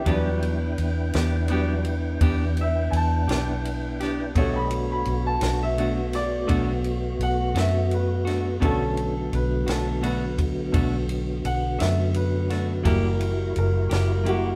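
Slow blues in 12/8 at 56 BPM in B minor, soulful and mournful, with a woody upright piano taking a solo over Em7, Bm7 and a closing F#7b9 in this excerpt cut from a longer piece. A tonewheel organ holds sustained chords through a slow rotary speaker with chorus vibrato and key click, a clean picked electric guitar adds dark tremolo-laden accompaniment, and a foam-muted vintage bass sits round and up front. A compact cocktail kit of punchy kick, high-tuned snare and dark ride cymbal keeps time, the band sounding live together in a moderate stone room.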